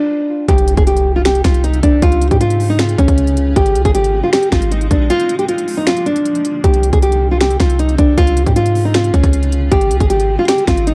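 Dark and eerie, this excerpt from a longer half-time trap piece in C minor at 156 BPM opens with an up-front, thumb-plucked nylon-string guitar melody, joined at 0.5 seconds by a trap kit with a hard-clipped kick, sharp snare, crisp hats and finger snaps, a deep, sine-toned 808 bass and a background impact. A blurred, detuned granular cloud pad with its own reverb drifts in behind at 1.1 seconds, while the chords cycle through Cm, Db, Ab and Bb, with a break at 5.1 seconds. The whole carries a dry, gritty cassette character.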